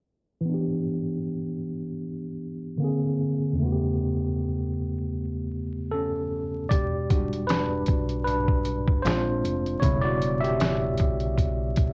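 A swung 16th-note lilt at 77 BPM in 4/4 sets up this reflective, melancholic lo-fi hip hop clip in E minor, taken from a longer piece. A worn, slightly out-of-tune tine electric piano opens alone at 0.4 seconds, up front and heard through its built-in speakers with cassette tape colour and a low-pass filter, while a filter sweep runs across the opening section over Em7, A#9 and A9/E. At 6.7 seconds a compressed, pitched-down trip hop sampler-style drum kit arrives up front with a thumpy kick, a medium-tuned snare, hi-hat and finger snaps, all muffled by cassette tape. A woody pizzicato upright bass with steel strings joins at the same moment, and the electric piano moves into a solo over the same chord cycle. The mix sits in light reverb with the hazy feel of a home cassette recording, vinyl crackle and a low-pass filter that dulls the top end.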